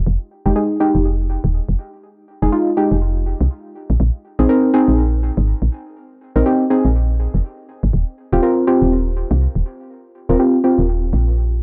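A deep, mellow chord stab, nasal and full-bodied with chorus and tape echo, sits up front in this deep, swung deep house excerpt, cycling through Fm7, Bb9sus4 and Eb69 from 0.5 seconds. Underneath, a woody FM bass gives round, dark notes with a fast attack and quick decay. A light digital ambience surrounds the dry, gritty hardware sound, lending the fragment a deep, warm mood.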